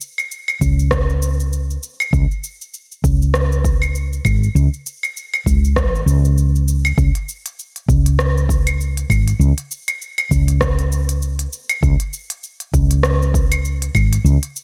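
A woody fretless electric bass stands out up front, its dark, round, hollow-body tone amped and sitting low between G#1 and C#2 from 0.6 s to 14.4 s. This organic downtempo piece moves at 99 BPM in 4/4, with a 16th-note swing of 58% that gives it an earthy, meditative sway. A deep house drum kit runs through the whole 14.6 s section, layering claves, smooth hats, rim click and shaker with a produced sheen and the character of a small room. An electronic kick drum joins at 0.6 s, adding a deep, produced pulse beneath the kit. Light reverb lends the recording a gentle sense of space, and the passage is cut from a longer piece.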